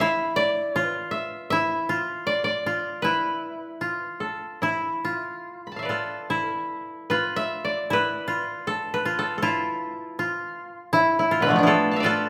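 Austere and calm, this Japanese chamber music in the traditional style moves at a rubato pace of roughly 70 to 83 BPM in 4/4, centred on E in a sen mode with tuning set to A4 = 439 Hz. Two kotos, both plucked with fingerpicks, play throughout the 12.3 seconds of this passage cut from a longer piece. One carries the melody across a broad span from B2 to B5, while the other holds a second line confined to a narrow band between E4 and F4. Both instruments sound woody, dry and up front, their acoustic tone set within a moderate recital hall reverb. The music shifts into a new section at 6.3 seconds, giving the brief passage a two-part shape.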